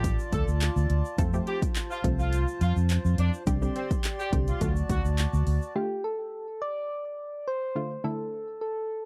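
A dry, close 1970s-style studio sound with digital ambience frames this driving, energetic dance-pop excerpt at 105 BPM in 4/4. It opens in a drop, where an overdriven analog drum machine punches out kick, hi-hat and handclaps over a dark, round, foam-muted fingered electric bass, both up front, the bass pumping to the sidechain, while distant, roomy horns carry the melody with light vibrato and tape echo. Detuned, wave-folded chord stabs with chorus and a reedy, nasal harmonium breathing sustained chords fill in over Dm, F, Csus2 and D, with a grainy egg shaker deep in the background; at 5.8 seconds a gentle, keys-like FM synth lead with chorus takes the melody over an F6 chord alongside the stabs, which stop at 8.9 seconds.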